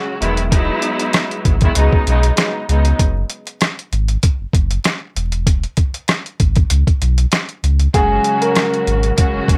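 A gritty, pitched-down boom-bap kit with a thumpy kick and medium-tuned snare swings lightly at 97 BPM in F# mixolydian from 0.2 seconds beside a deep sine sub bass, while a rich, bowed string section with vibrato carries the opening break and returns at 7.9 seconds alongside a woody upright piano melody touched with plate reverb and analog delay, the nostalgic hip-hop groove wrapped in a prominent vinyl crackle.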